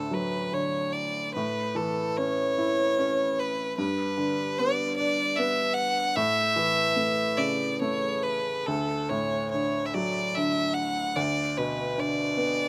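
Dry and open-air, with almost nothing of a room around it, this short passage cut from a longer Celtic slow air sets a bowed solo fiddle and an upright piano close up front. At about 73 BPM in a loose, rubato 3/4 in D major, the fiddle carries a wistful, nostalgic melody with a focused, boxy tone and light vibrato. The intimate, woody piano accompanies it through D, A, G, A and back to D before settling on Bm/D near 11.2 seconds, its action noise audible and a slapback echo trailing its notes.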